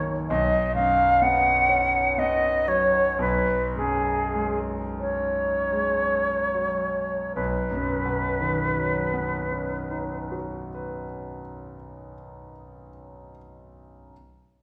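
An airy silver flute with vibrato carries a dreamy, pastoral melody in this rubato impressionist chamber fragment in 6/8, slowing through its opening 7.4 seconds and falling silent at 10.3 seconds, while an intimate grand piano with deep bass and audible action noise supports it with suspended, open harmonies until 14.1 seconds, both sitting close yet bathed in a wet recital-hall reverb heard from further back in the room.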